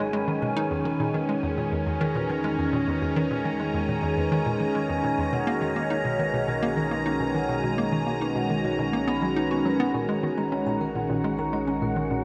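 A straight 4/4 pulse carries this hypnotic, mysterious piece of sequencer-driven ambient space music, where a bouncy, detuned square-wave pluck riff and soft-mallet vibraphone arpeggios with analog delay ring over a swirling, up-front phased sawtooth pad, while a nasal analog drone fades in underneath through the whole 12.2 seconds and an airy, wind-like tuned noise texture breathes in the background, the whole excerpt soaked in a huge, dreamy reverb as the chords move from G#m through E and B to F#69/A#.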